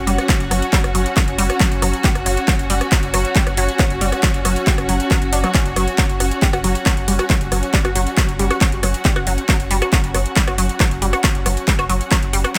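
This driving peak-time techno excerpt runs at 137 BPM in a straight 4/4, with a punchy electronic kick sitting up front from 0.3 seconds over a layered techno kit of handclaps, metallic hi-hats and rim clicks that enters at 0.1 seconds. Underneath, a deep, thick sine sub bass holds F#1, saturated through tube warmth, low-pass filtered and pumping against the sidechain. A squelchy, resonant blip pluck carries the riff between F#3 and F#4, its bright sawtooth tone roughened by overdrive, ring modulation and a noise layer, then swirled by phaser and trailed by dub echo. Behind it all, a muted studio string section plays con sordino with vibrato from C#4 to F#5, a veiled, dark bowed texture that also breathes with sidechain pumping. The mood is industrial and driving, set in light reverb across a roughly 12.6-second stretch cut from a longer track.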